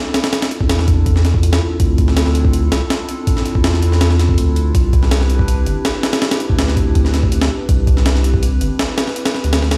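Played on a big sound system in a bare stone room with light reverb, this dark, nostalgic drum and bass excerpt at 163 BPM in D dorian sets a warbling, lo-fi, detuned pad holding sustained Dm9 and Cmaj9 chords through chorus and its own reverb, while a gritty, compressed breakbeat kit with a thumpy kick, high-tuned snare and hi-hat sits up front from 0.1 seconds and a deep, thick, saturated sine sub bass enters at 0.6 seconds.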